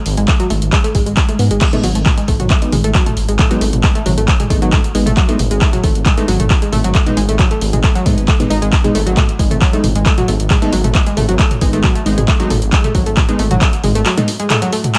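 An analog pluck riff with a round, chorused tone and tape echo opens this relentless, industrial stretch of driving peak-time techno, joined almost at once by a deep, rumbling detuned saw bass and a layered drum kit of warm hats, handclaps, toms and crash, with the pluck, the bass and the kit's hats, toms and crash pumping under the sidechain, while an overdriven, punchy kick sits up front from 0.3 seconds, a very quiet electronic swell sounds just before the drop at 1.6 seconds, and crisp, digital wavetable chord stabs with a moving notch and echo carry on from 1.7 seconds.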